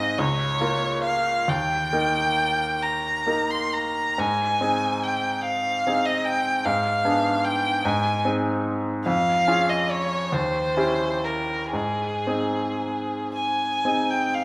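A violin and a bright baby grand piano open together in this serene, tender romantic classical duo, moving in a slow, rubato 6/8 as the violin sings the melody over the piano's accompaniment. The violin's tone is smooth and even with vibrato, while the piano sounds brilliant and intimate, its action noise audible beneath polished playing. A moderate scoring-stage reverb surrounds both parts, and the harmony drifts through a diminished chord before a dominant resolves home near 11.7 seconds in this excerpt from a longer piece.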